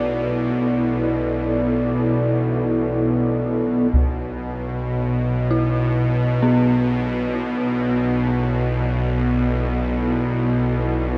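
A tense, string-like drone and a deep, moody pad open this ominous dark ambient fragment together, holding a B minor chord in free time. The drone sits up front in the low register, its bright, detuned sawtooth tone carrying vibrato and a grainy ring-modulated edge, while the dark pad sustains chords above it with a sub octave beneath and a gentle chorus shimmer. At 3.9 seconds a taiko ensemble enters briefly and up front, played with heavy sticks, its acoustic small-room sound muffled by a low-pass filter. From 5.5 seconds an eerie, inharmonic FM bell traces arpeggios in the background, mellow and full-bodied, its quickly decaying notes trailing through chorus and delay. The whole dreamy mix is soaked in a moderate plate reverb, giving the piece a cavernous, suspended atmosphere.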